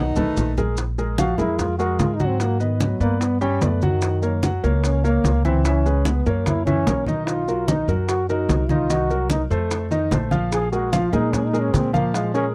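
A clear tenor saxophone sounds a single brief note at the very start, alongside the trombone, concert grand piano and upright bass, with a drum fill leading in before bongos, congas and maracas join at 0.2 seconds. This is sultry, sophisticated Afro-Cuban jazz in a straight 4/4, and from 0.8 seconds the trombone takes a solo, its tone warm with vibrato and scooped notes. Beneath it, the piano supplies intimate, natural-sounding accompaniment with deep bass and audible action noise, while the pizzicato upright bass sits up front, woody and growly. The congas are bright and low-tuned with a thin skin, the bongos round, compressed and saturated under soft hands, and the maracas grainy and mellow. A second drum fill arrives at 6.5 seconds, and the harmony moves through rich chords such as Abm7, Gb7 and Bmaj7 before settling on Bbm7. The sound is dry and close, like a 1970s studio session, and the passage is cut from a longer piece.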